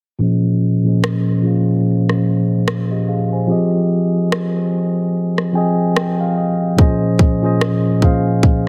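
A mellow, clean tine electric piano opens this late-night, sensual contemporary R&B excerpt at 0.2 seconds, sounding as if through built-in speakers under a low-pass filter sweep as it moves from Bbm11 to Fm7 and back in Bb dorian at a swung 73 BPM in 4/4; an up-front electronic trap kit joins at 1.0 seconds with a hard-clipped kick, rim clicks and soft clipping on the snare, the piano adds a fill from 5.1 seconds, and light reverb sits within a dense, heavily limited modern master.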